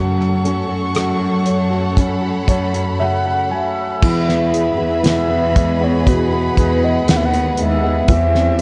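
Worn and warbling like an old cassette, this short cut from a tender, heartfelt pop ballad has a soft, dulled top end and a light small-room reverb. From the start, a deep-voiced concert grand piano plays accompaniment with short sustain while a studio string section holds smooth, focused bowed chords, a plugged-in steel-string acoustic guitar fingerpicks arpeggios in the background, and an intimate cello section carries the bass up front with soft-attack bowing and light vibrato. A dry, damped 70s drum kit enters at 0.2 seconds with a fat snare, tight kick, rim clicks, hi-hat and crash, sitting forward in the mix. The piano adds a fill from 2.0 to 4.0 seconds, and at 3.0 seconds a mellow, round, horn-like synth lead takes the melody with a soft attack, vibrato and chorus. The harmony moves from F#m to E at 4.0 seconds, touching C/E near the close.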